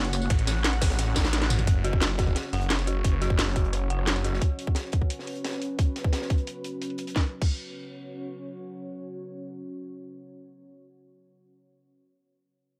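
A deep, moody ambient pad with chorus and sidechain pumping opens this dark, tense technical drum and bass excerpt in F# minor at 175 BPM, alongside an up-front electronic kit with cracking snare and metallic hats and a gritty, rolled-off breakbeat kit in the background, before a tight electronic kick and a growling, snarling distorted saw bass enter at 0.3 seconds, an eerie, inharmonic detuned synth bell adds arpeggios with tape echo from 1.8 seconds, and a filter sweep on the drums runs through the middle of this dry passage.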